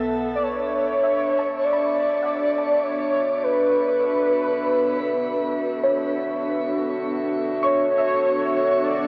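In a slow, straight 3/4 at 50 BPM, this serene, reflective ambient fragment in B minor sets a warbling, nostalgic tape-like pad holding sustained chords beneath soft, round pluck arpeggios with lush chorus and tape echo and an airy glass harmonica texture, while a velvety, up-front synth lead with vibrato carries the melody from 0.4 seconds over a Bm11 chord, all bathed in a shimmering reverb and the drifting pitch of worn cassette tape as the pad fades in.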